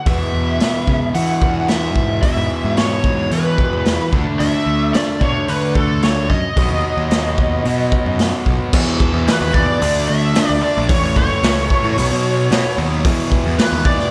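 A big arena sound with a moderate stage reverb frames this short, confident classic rock cut, taken from a longer piece and moving at a straight 111 BPM in 4/4, centred on E mixolydian. Up front, a double-tracked, distorted electric guitar carries the riff with a bright, compressed, picked tone, while a fuzz-laden picked bass, overdriven and warm, roots the low end. The raw garage drum kit sounds gritty and saturated in a small, pumping room, with a boomy kick, a medium-tuned snare, dark cymbals and a rolled-off top sitting close to the listener. Over this, a lead guitar through a small cranked amp sings the melody with wah, overdrive and slapback echo from the very start. The chords move from E through D5 and B before a second passage at 8.7 seconds cycles E5, D5, A and B back to E5, giving the whole thing a swaggering strut until it breaks off at 14.1 seconds.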